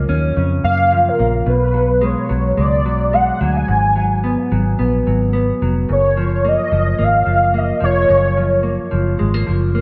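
Indie bedroom pop with a laid-back, nostalgic mood, this piece pairs a mellow, compressed electric guitar, treated with lush chorus and warbly pitch drift, with a round, punchy foam-muted fingered bass and a velvety, detuned sawtooth synth lead that enters at 0.6 seconds with vibrato, portamento, ensemble chorus and analog delay, the dreamy mix soaked in hall reverb over a lightly swung groove.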